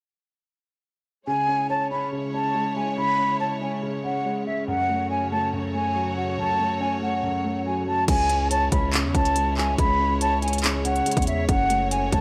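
Hip hop and trap at 141 BPM in a half-time 4/4 feel, this dark, menacing excerpt sits in C# minor, moving between C#m and F#m. From 1.3 seconds a breathy concert flute carries the melody up front, its tongued, expressive line shaded with vibrato and lifted highs, while a dark, mellow grand piano with deep, boxy low end plays accompaniment beneath it, both passed through a low-pass filter. Behind them, a lush symphonic string section holds bowed, sustained chords with a focused, smooth-topped ensemble sound. At 8.1 seconds the second section brings in a heavy, saturated 808-style bass, aggressive and distorted with a noise layer, fast attack and decaying tail, alongside an electronic trap kit of hard-clipped kick, crisp hi-hats, handclaps and crash cymbal with a tape-warmed, up-front presence. Light studio reverb gives the whole arrangement a modest sense of space.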